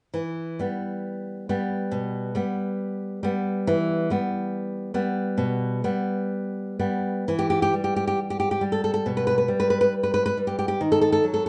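A lone fingerpicked nylon-string guitar opens on E minor, playing a wistful, intimate romantic classical passage at 68 BPM in 4/4, its beats uneven and pushed and pulled in free rubato, in a range from B2 to B4. The acoustic tone sits warm and up front, bathed in a wet studio reverb with a soft, rounded top, as if played live in one room. After a new section begins at 7.3 seconds, the harmony shifts to a D# diminished chord at 10.8 seconds before this short passage, cut from a longer piece, ends at 11.5 seconds.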